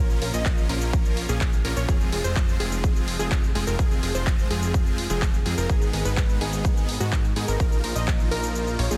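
Huge, bright supersaw chords open this anthemic 126 BPM festival progressive house excerpt over a thick, tube-saturated analog bass with a filter sweep and a lush, wave-folded unison pluck arpeggiating in the background, all three pumping to the sidechain through a Bbm, Fm, Abm and Bbsus4 progression, while an overdriven, layered dance kit of cabasa, handclaps and hi-hat joins almost at once and a punchy, up-front electronic kick drives from 0.5 to 8.2 seconds in a dense, heavily limited modern mix.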